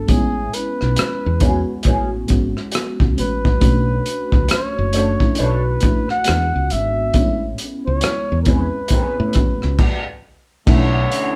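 R&B with a neo-soul lean, this short cut from a longer piece has a smooth, late-night mood and an unhurried, swung pulse. A mellow flugelhorn carries the melody with a soft attack, light vibrato and scooped notes, sitting close and intimate, while an FM electric piano layered with a soft pad supplies lush, dreamy chords through a chorus effect. Underneath, a woody fretless bass sounds round and punchy, and a crunchy breakbeat kit sits up front with a tight kick, rim clicks, hi-hat and dark, rolled-off cymbals that give the groove a gritty, saturated edge. From 1.4 seconds an electric guitar through a small old amp adds a slightly broken-up, lo-fi second line shaped by wah. The chords move through Amaj9, Bm9 and E9 before a stop at 9.8 seconds, and at 10.7 seconds a reedy accordion enters with sustained chords on a closing Bm11, all heard in a light reverb that suggests a band playing together in one room.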